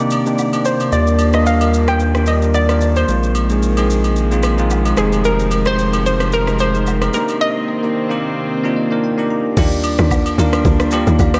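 Soulful and relaxed, this amapiano passage, cut from a longer piece, swings gently in 4/4 under a dreamy, reverb-soaked haze. A bell-like, bright tine electric piano carries the accompaniment up front with a subtle chorus, while a soft, floating string section holds bowed ensemble chords in the background, pumping against the beat. An electronic R&B drum kit with a knocking kick, rim click, shaker and crash sits beneath, joined in the background by acoustic agogo bells and woodblock. A hollow, bouncy square-wave pluck carries the detuned melody through chorus and analog delay, and a deep, saturated sine sub bass enters at 0.9 seconds as the chords move through Cm9, Ebmaj7, Bb9sus4 and Fm7. A break arrives at 7.4 seconds, with the electric piano playing a fill from 8.5 seconds, before a tight, punchy log drum bass with a noisy FM edge takes over at 9.6 seconds on Ebmaj7.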